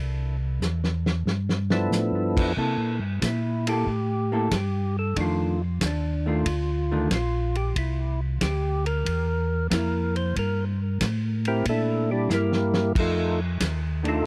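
A round, dark tonewheel organ opens this bluesy soul jazz organ trio excerpt, laying down the bass line in C mixolydian with chorus vibrato and a slow rotary speaker at a relaxed, swinging 92 BPM. A tight, fat-snared soul drum kit enters with a fill at 0.6 seconds, working crash, ride, hi-hat, kick and snare, before a second, percussive tonewheel organ, lightly overdriven with tape echo and its own slow rotary, takes a solo from 2.6 seconds. A clean, picked hollow-body electric guitar comps underneath on changes moving through C6, F6, C13 and F13, all captured in a dry, close 1970s-style studio sound with light reverb.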